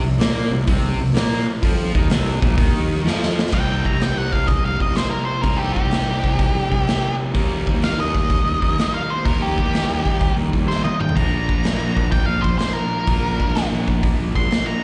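Brooding and smoky, this cut from a longer blues rock and southern rock power-trio piece rolls along at 126 BPM in 4/4 with a swung eighth-note feel in C minor. A double-tracked, distorted electric guitar drives the riff with bright, picked tone and slapback echo. A growly fuzz bass, fingered and overdriven, sits low beneath it. Up front, a raw garage drum kit brings a punchy kick, medium-tuned snare, hi-hat, toms and crash with a saturated, gritty character in a pumping stone room. After a drum fill, a dark octave-fuzz lead guitar enters at 3.5 seconds, picked and prominent with its own slapback echo, as the harmony moves from C minor to Eb at 7.3 seconds and Bb at 11.2 seconds. The sound is that of a live club gig heard through the venue's PA, with a touch of club reverb and a dulled, muffled top end.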